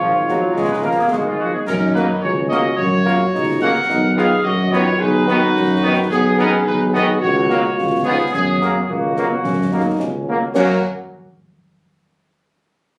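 Warm, lightly vibrato trombone chords sit up front beside a smooth-topped tuba bass in this spirited, proud military-style wind-band march excerpt, where a mellow, vintage trumpet section carries the melody over a clear, soft-attack euphonium line, a distant woodwind section and dark French horns from 0.3 seconds in the background, and concert bass drum, snare and dark-toned clash cymbals, all caught on a phone in a reverberant, compressed club room.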